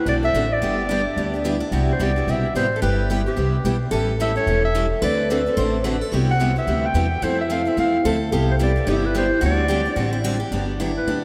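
A quick swung 4/4 at 218 BPM drives this playful, charming fragment of acoustic string swing in G major, cut from a longer piece and set in a vast, echoing cathedral space. A warm, vibrato-laden clarinet carries the melody up front with scooped notes, a smooth top and a slapback echo, while a picked steel-string acoustic guitar plays a second line with finger squeak. Two more picked acoustic guitars, one with fresh strings and one a parlour tone in the background, pick out the accompaniment through chords from Cmaj9#11 to Gmaj7, over a woody, thumpy pizzicato upright bass on gut strings.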